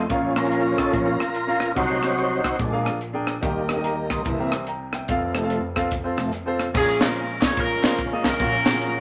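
A swung 4/4 groove at 144 BPM drives this fervent, soulful slice of uptempo gospel in Bb harmonic minor, cut from a longer piece. A crisp fusion drum kit with a punchy kick, high-tuned snare and dark cymbals runs under almost the whole passage, its crash, ride, hi-hat and rim click sounding polished and airy. An overdriven tonewheel organ takes the lead for the first 6.8 seconds, its thick, gritty sustained chords colored by key click, chorus vibrato and a slow rotary speaker. A clear, natural baby grand piano accompanies throughout, spanning from deep bass to bright upper register as the harmony moves from Bbm through Cdim, Bb7, Eb, C7 and F. At 6.8 seconds a tight, vintage-flavored horn section enters with the melody over Bbm7 and Gbmaj7/Bb, its tone carrying a light vibrato, while a very quiet group handclap joins at 7.0 seconds. A wet studio reverb gives the whole ensemble a lively room sound.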